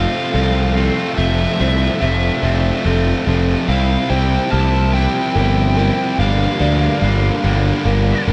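Post-rock build-up in a slow, straight 6/8, cinematic and euphoric, where a biting, overdriven lead guitar sings a high melody over a bright, picked distorted guitar riff and a growly, punchy fuzz bass up front, while a soft felt-muted upright piano ripples arpeggios through analog delay in the background and a very quiet chamber string section holds rich, bowed chords beneath, all moving from Fmaj7 through C7sus4 to Gm7 in a dark, reverberant production cut from a longer piece.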